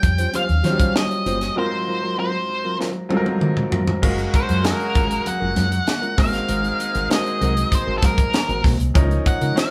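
A polished, live-in-one-room sound with a short, wet studio reverb frames this upbeat, urban slice of 1980s jazz-funk pop, cut from a longer piece and moving at 98 BPM in a straight 4/4. Up front, an octave-fuzz lead guitar carries the melody with a dark, distorted, picked tone, while a tight funk drum kit drives things with a high-tuned snare, tight kick, hi-hat, crash cymbal and toms. A woody fretless electric bass sits round and hollow underneath, and a bright concert grand piano adds brilliant accompaniment with deep bass. Further back, a mellow electric guitar plays a clean, fingered riff, and very quiet congas ring with hard hands from 0.3 seconds. A break arrives at 1.6 seconds, capped by a drum fill, and at 4.0 seconds the music moves into a new section where a clear, punchy horn section enters in the background with light vibrato and octave doubling, as the harmony shifts from Eb13 and Ab13 through Gbmaj9 and Ab9 to a closing Db69.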